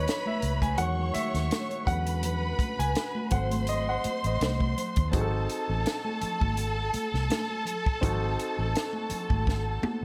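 Lush 1970s-style soul with a smooth, bittersweet mood, this excerpt from a longer piece moves with a gentle swing. A dark, mellow concert grand piano with deep bass carries the accompaniment and takes a solo through the first 5.1 seconds, over rich chords moving from C#m11 through Emaj7 and E13 to G#7b9. An expressive bowed string section sits up front on the second line, its smooth top shaped by vibrato and portamento. A vintage muted fingered electric bass gives a round, foam-muted, amped low end, while a compact cocktail drum kit sounds dry and acoustic, with a punchy kick and a high-tuned snare, closing on a fill at 9.5 seconds. Bright, thin-skinned congas with a band-limited vintage tone tick along in the background, all within a light reverb.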